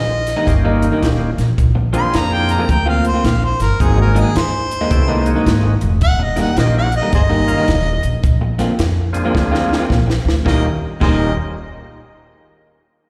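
A woody, growly upright bass sits up front in this soulful, rollicking electric blues shuffle at 108 BPM, cut from a longer live gig heard through the venue's PA in recital hall reverb, while a mellow, jazz-style harmonica solo with light vibrato, tongue slaps and scooped notes carries the melody through slapback echo and analog delay over a slightly broken-up, compressed guitar riff with spring reverb, a thick, lightly overdriven percussive tonewheel organ turning through a slow rotary speaker, and a dry cocktail kit with a punchy kick, high-tuned snare and dark cymbals that plays a fill from 9.3 to 10.5 seconds.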